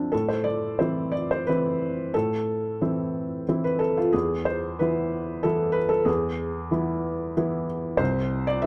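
Reflective and intimate, this brief fragment of neoclassical minimalist piano features a lone felt-muted upright, up front and boxy with short sustain and audible action noise, drifting in a rubato 3/4 from Am to E under light reverb and a dark production before breaking off at 8.7 seconds.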